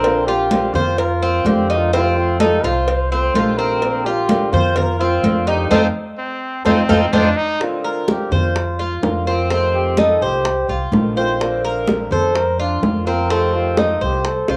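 A homey cassette recording with moderate spring reverb and a small-room feel frames this relaxed, danceable slice of Cuban son and guajira in Bb major at 127 BPM, cut from a longer piece. Up-front metallic tres arpeggios on double strings ring over a boxy, fingerpicked swing-style acoustic guitar, while a woody, growly pizzicato upright bass anchors the Bbadd9 to F7 vamp beneath ringing hard-hand congas and tight, high-tuned cowbell and bongos sitting in the background. A veiled, close-miked trumpet with bucket mute carries the melody with light vibrato, a punchy bright trumpet adds a brief second line from 6.2 seconds during a band accent and drum fill, and the muted horn then takes a jazz-style solo from 7.6 seconds.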